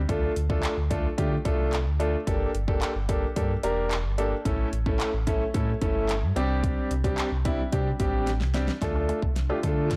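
Bittersweet and driving, this 110 BPM dance-pop excerpt in D minor rides a deep sine sub bass with octave and a clear, intimate grand piano, both pumping with sidechain, over a punchy, up-front pop drum kit of handclaps, metallic hi-hat, kick and fat snare, moving through Dm, Gmadd9, A and Csus2 before a drum fill at 8.3 seconds leads into a build-up where a very quiet, squelchy sawtooth blip pluck arpeggiates from 8.8 seconds and a blurred granular cloud pad enters at 9.4 seconds, all in a blown-out, overdriven recording with light reverb.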